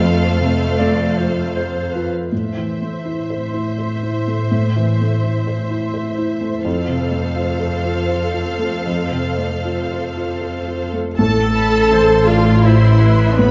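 A felt-muted upright piano sits up front, intimate and soft with its action noise audible, alongside lush bowed strings in a rubato 3/4 cinematic score that feels moving and hopeful. Close, vibrato-rich violins carry the melody over a second violin line in the background, with distant, clear violas and focused cellos beneath. Double basses and a roomy, very quiet French horn section open the passage and return at 11.2 s, a punchy, mellow solo clarinet adds a second line from 0.8 s and again near the close, and moderate concert hall reverb gives this fragment of a longer piece a dark, warm production.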